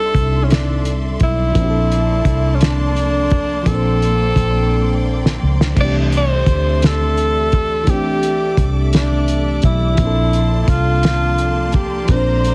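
A breathy tenor saxophone sings a mellow, lightly vibratoed melody with scooped notes over a glassy, bell-like FM electric piano with chorus, a bright, lush string section and a round, foam-muted electric bass, in a tender, slow six-eight R&B groove at 57 BPM in C mixolydian. A cloth-damped, thuddy drum kit enters at 0.1 seconds with a fat snare, tight kick and dark cymbals, muffled and gritty in a small room, and plays a fill from 4.7 to 5.8 seconds. The chords move between C69 and Bbmaj9, and the whole passage carries a heavily compressed radio sound, cut from a longer piece.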